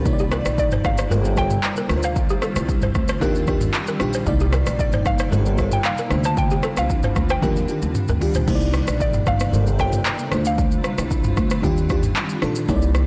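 A blown-out, overdriven recording with light reverb carries this mellow, sultry afrobeats excerpt at 114 BPM, where an up-front, overdriven electronic drum kit with deep kick, crisp hats, handclaps and shaker drives a woody, growly pizzicato upright bass beneath a lush, chorused FM electric piano and a cloudy, detuned granular pad cycling through Cm9, Gm11, Dm7 and Ebmaj9, while a buzzing balafon riff with delay plays until 8.4 s, a round, percussive synth pluck carries the melody until 11.0 s, and a drum fill leads into the repeat of the section at 8.5 s.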